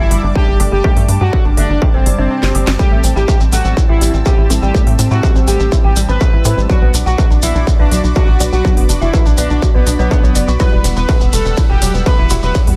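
A distorted electronic kick, re-recorded in a large room, drives this dark melodic techno excerpt at 123 BPM in A dorian, briefly dropping out at 2.3 seconds for a drum fill, while the house kit supplies cracking snare, crisp hats and ride, with a grainy acoustic shekere joining at 2.8 seconds. A tight, nasal sawtooth sequencer bass pumps beneath a bold, brassy analog synth lead with tape echo and vibrato, while an eerie, inharmonic FM bell traces a second line higher up. In the background sit woody wave-folded pluck arpeggios, muted dub chord stabs through phaser and echo, and a lush, thick unison pad holding chords that move from Gsus2 through Am7 and Bm to Emadd9.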